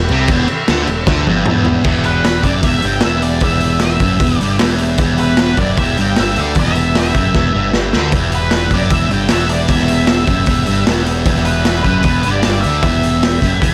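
A lo-fi, saturated recording with light reverb captures a menacing, swaggering garage rock excerpt in E minor at 153 BPM in straight 4/4. Up front, a bright, double-tracked fuzz guitar riff drives alongside a growling, overdriven picked bass and a muffled small-room drum kit with punchy kick, medium-tuned snare, toms, hi-hat and crash, which plays fills at 1.1 and 7.3 seconds. Behind them, a buzzy vintage combo organ holds clean chords with light vibrato and lush chorus, and at 2.1 seconds a dark octave-fuzz lead guitar enters with the melody.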